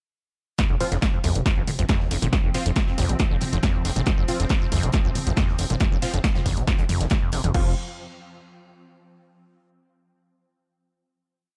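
Driving peak-time techno, dark and intense, that bursts straight into a drop at 0.6 s: an up-front four-on-the-floor electronic kick drives a punchy analog drum machine whose snare marks the backbeat while its hats, toms and crash pump against it, and a very quiet, muffled acoustic studio kit adds a looped breakbeat with edits from a small room. A gritty, saturated synth bass gallops in sixteenths beneath a squelchy, resonant acid saw line full of accents and slides, run through cassette tape and delay. Sparse, detuned supersaw chord stabs echo above, and a swarming, warbling granular drone hovers in the background before the piece settles on a final chord at 7.5 s.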